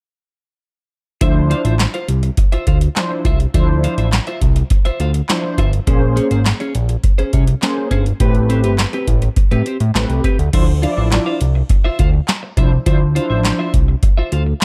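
A booming analog drum machine drives this danceable, slick early-eighties boogie funk excerpt at 103 BPM in a straight 4/4, its deep kick, crisp snare, handclaps, metallic hi-hats and crash sitting up front beside a fat, detuned sawtooth-and-square analog bass with a filter sweep and moving notch. Mellow synth brass, round and dark with chorus and vibrato, carries the D dorian chords from Dm9 through Bbm9 and Am9, while a clean, twangy electric guitar picks a bright, compressed riff treated with analog chorus. The dry, dusky production moves into a second section at 10.5 s, where the harmony returns to Dm9, and the drums play on until 14.6 s.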